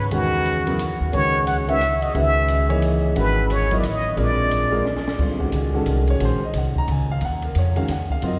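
Bathed in a long, cathedral-like reverb that sounds like a church or concert hall, this short cut from a longer modal jazz piece has a spiritual, hypnotic mood, swinging in 3/4 at a brisk 178 BPM and moving from C# dorian to Eb dorian at 5.2 s. Up front, a plunger-muted trumpet sings the solo melody with wah-wah, vibrato and scooped notes over C#m11 and A#7 chords before falling silent at 5.0 s. A natural-sounding grand piano with deep bass, a woody pizzicato upright bass on steel strings, and an acoustic kit with dark cymbals, a high-tuned snare and a boomy kick carry on into the Ebm11 passage after a drum fill at 4.8 s.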